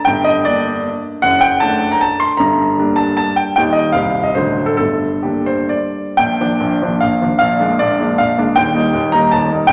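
A polished, up-front baby grand piano opens this nostalgic, capricious romantic dance in 3/4, moving with rubato between 119 and 168 BPM through dotted rhythms spanning C1 to C6, turning from G minor to Bb major at 6.2 s before the brief fragment breaks off at 9.7 s, all set in a wet recital hall reverb.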